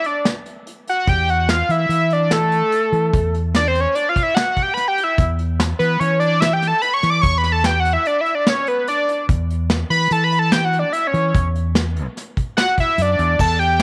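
Intricate and brooding progressive instrumental in 5/4 at 146 BPM and E dorian, cut from a longer piece, where a fat, warbling analog synth lead with chorus, vibrato and a filter sweep plays a solo melody from A4 to D6 over an E7sus4 chord, a vintage brush drum kit with dark cymbals and a punchy kick keeps time, and a fingered electric bass enters at 1.1 s, all in light reverb and studio ambience.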